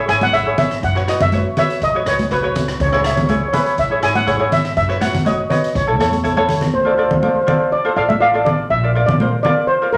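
Calypso at 122 BPM with a driving, tense mood, where a shimmering, mellow steel pan carries the melody up front over light fingerpicked ukulele, a woody pizzicato upright bass and damped, high-tuned congas, while an airy street-band drum kit with a boomy kick plays a fill and drops out at 6.7 s as the key shifts from C# minor to D minor, all set in a wet, large studio reverb.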